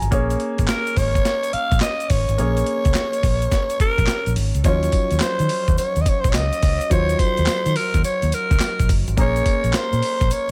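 Bouncy and slick, this short cut from a longer new jack swing R&B piece moves at 106 BPM in 4/4 with a swung sixteenth-note feel, sitting in Eb dorian. A sampler-style boom bap kit sits up front, compressed and gritty, with a thumpy kick, high-tuned snare, handclaps, hi-hat and tambourine, while a grainy egg shaker stays in the background. Underneath, a vintage foam-muted fingered electric bass gives a dark, round and punchy low end, and a warm, natural-sounding grand piano fills in the harmony over Bbm7, then Ebm9 at 4.6 seconds and Bbm9 at 9.2 seconds. At 0.7 seconds a raspy alto saxophone enters as the up-front solo voice, bright and pop-styled with vibrato. Studio reverb gives the mix a polished sheen.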